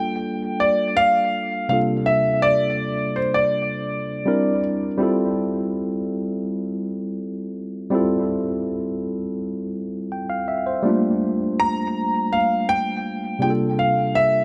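R&B at a relaxed 82 BPM in straight 4/4, this moody, longing excerpt moves through lush ninth and suspended chords, opening on Gm9 and closing on C13sus4. A worn, slightly out-of-tune tine electric piano plays accompaniment throughout, sounding clean and up front as if through its built-in speakers. An intimate concert grand carries the melody with audible action noise and deep bass, stepping away at 4.6 seconds and returning at 11.6 seconds, while tape echo on both pianos and a moderate spring reverb give the mix a heavy, echoing haze.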